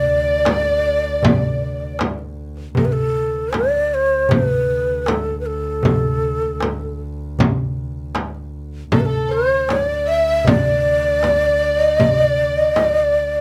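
This Arabic maqam ensemble piece in D maqam rast moves at 78 BPM in a straight 4/4, carrying a warm, passionate mood through a short cut from a longer work. A breathy, mellow ney leads the melody up front throughout, its hollow reed-cane tone marked by vibrato and a crisp attack. A dark, woody studio violin section plays a bowed second line with vibrato and a slapback echo, heard at the opening until 2.0 seconds and again from 8.9 seconds. Beneath them a single bowed double bass holds a low drone on D2, intimate and close with an airy, soft-attacked sul tasto sound and light vibrato. The percussion pairs a clay-shelled darbuka played with soft hands and a small, bright frame drum set up front, both compressed and saturated. A small room with moderate reverb gives the ensemble a close, natural space.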